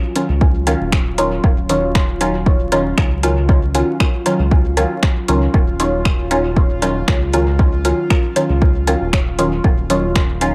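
Opening with a muted, detuned dub chord stab up front and a breathy pad in the background, both pumping to the sidechain on a held Ebm9, this deep, hypnotic dub techno excerpt at 117 BPM in Eb minor soon adds a deep house kit of finger snaps and metallic, overdriven hi-hats soaked in dub echo, a round analog bass with tube saturation, and an overdriven electronic kick sitting up front, all in an echo-heavy mix with light digital ambience and vinyl crackle.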